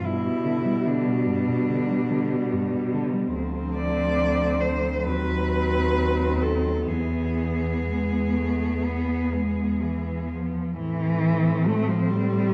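A clear, bowed cello carries the melody with smooth, even vibrato until it falls away at 10.3 s, in this melancholic, elegiac excerpt from a lyrical classical piece for cello ensemble, unfolding in a rubato 4/4 at roughly 60-74 BPM and settling into A minor from 3.4 s. Beneath it, a warm second cello shapes an expressive line with soft attacks and portamento, while two rich cellos supply accompaniment and bass, one sliding expressively, the other steady and vibrato-laden. A dark production and the lingering reverb of a recital hall lend the ensemble a distant, mournful glow.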